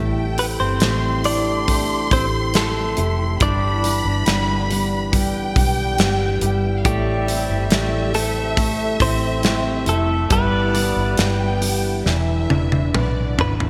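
A bright, compressed clean electric guitar carries the melody of this longing, heartbroken pop ballad at 69 BPM in A minor, over a woody upright piano with chorus, fingerpicked steel-string acoustic guitar arpeggios in the background, a dark, foam-muted electric bass, a distant, very quiet brass ensemble holding sustained chords, a rich bowed violin section on a second line, and an up-front drum kit with punchy kick and gated reverb that plays a fill from 12.1 seconds, the whole ensemble sitting in a lush hall reverb with 1980s-style digital production.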